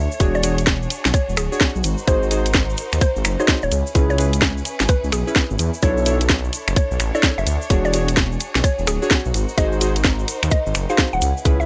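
Bouncy and late-night, this two-step UK garage excerpt rides a swung 128 BPM groove, with an overdriven, up-front electronic kick and a garage kit of cracking snare, hi-hat and finger snaps driving it alongside a dark, detuned saw bass that rumbles deep with sidechain pumping. A woody, warbling mallet-like synth pluck carries the melody through chorus, cassette tape character and dub echo, while deep, nasal chord stabs with tape echo move through E13, G#7, C#m7 and Bm11. A rich studio violin section holds sustained chords in the background with sidechain pumping, and a grainy cabasa adds bright texture under light reverb.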